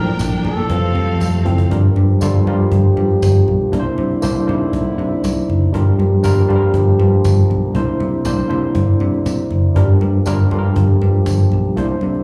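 A straight 4/4 disco groove at 119 BPM drives this danceable clip, cut from a longer piece in G dorian, with a snappy cajon, low-level, damped congas and a jingly tambourine with slapback echo setting the pulse. A punchy, round picked electric bass sits up front and dark, while a worn, slightly out-of-tune electric piano, lightly overdriven and heard through its built-in speakers, carries the accompaniment with its own slapback echo. A distant, soft-attacked French horn section holds sustained chords throughout. In the opening moments a clear flugelhorn melody with light vibrato and a lush, bowed string section both ring with slapback echo over Bbmaj7 and Fmaj7; the flugelhorn stops at 1.4 seconds, and a drum fill leads into the strings' exit at 1.7 seconds. From there the harmony alternates between Gm7 and C9 as the rhythm section and horns carry on, all heard as a live club gig through the venue's sound system with small-room ambience.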